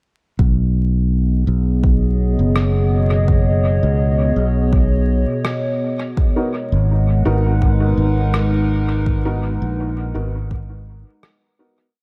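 Ambient dub with a meditative, spacious mood, this short whole piece settles into an unhurried groove from its opening moments, set against a bed of vinyl crackle and light reverb. A soft, deep electronic kick sits up front with a tape-warm, small-room character, alongside a growly, bright fingered electric bass playing long gliding notes. A warbling, nostalgic pad of detuned waveforms carries slowly shifting chords, its slow attack and long release coloured by chorus, phaser and built-in reverb. A muffled, pitched-down rim click adds a sparse echoing beat from 2.6 seconds, trailing dub echo. At 6.4 seconds a dark, woody upright piano enters with worn, boxy chord stabs, one shape moved in parallel and thrown into dub echo, just before the whole piece begins fading out at 8.1 seconds.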